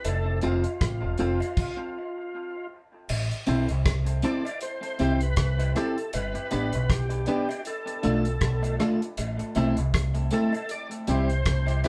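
A band playing live in one room, caught with moderate studio reverb, carries this sunny, laid-back roots reggae excerpt at 79 BPM with a swung sixteenth feel, moving through F, Am, C, G and Dm and pausing on a stop from 1.6 to 3.1 seconds before the second section begins. Up front, a round, punchy dub bass and a dry, damped 70s drum kit with tight kick, hi-hat, rim click and crash anchor the groove, while a twangy, compressed guitar at the edge of break-up adds accompaniment with dub echo. A gritty, overdriven tonewheel organ with chorus vibrato and slow rotary speaker carries the melody, and a woody, slightly detuned upright piano plays stabs in the background alongside distant cowbell and jawbone-type rattle percussion, also treated with dub echo.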